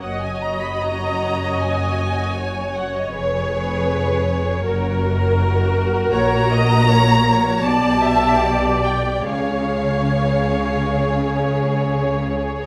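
A lush, vibrato-laden violin section carries the lyrical melody high above a second violin line in this serene, slow romantic movement for string orchestra in F# major, moving with a rubato feel at around 69-82 BPM in 4/4. Beneath them, a clear, intense viola section supplies accompaniment while warm, expressive cellos and a rich, even double bass section anchor the bass, with the harmony passing from F# through C#7/E# and a G/B chord before settling on C# near 9.3 seconds. The strings sit in a moderate scoring-stage reverb, and this short excerpt, cut from a longer piece, lasts about 12.7 seconds.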